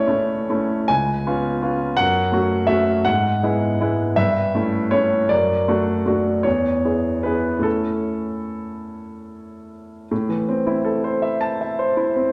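Classical romantic character piece for solo piano in 6/8 with free, rubato pacing, passionate and warm in mood. The concert grand sits up front with a smooth, vintage tone and deep bass, spanning A1 to A5 as it moves through a chord progression, then shifts to a shadowed minor color at 10.1 seconds before this brief cut closes at 12.3 seconds. A wet recital hall reverb surrounds the instrument, lending a glowing, spacious resonance.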